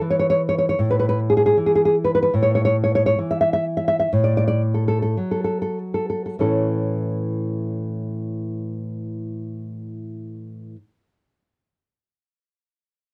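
A dry, close studio sound with a touch of light reverb carries this sunny, romantic fragment for solo nylon-string classical guitar, its thumb-plucked, warm tone up front as it moves in a rubato 2/4 from an A5 chord through D over A, slowing between 1.6 and 6.4 seconds before settling on a plain A chord and a new section.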